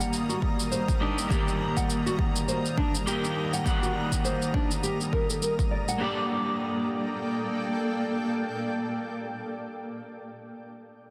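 An excerpt of mystical, meditative organic downtempo opens with a slightly broken-up, picked electric guitar carrying a filter sweep through its first 6.0 seconds, colored by analog chorus, delay and sidechain pumping, beside an up-front granular cloud pad of blurred, detuned sine tones that evolve slowly in their own reverb. A small, thumb-plucked nylon-string guitar adds arpeggios with audible finger squeak, a tape-warm shaker ticks in a swung 4/4, and a punchy, overdriven electronic kick sits up front until it drops out at 5.7 seconds. The harmony moves from Eb to Gmadd9 at 6.0 seconds, all bathed in a huge ambient reverb and a dense, heavily limited modern master.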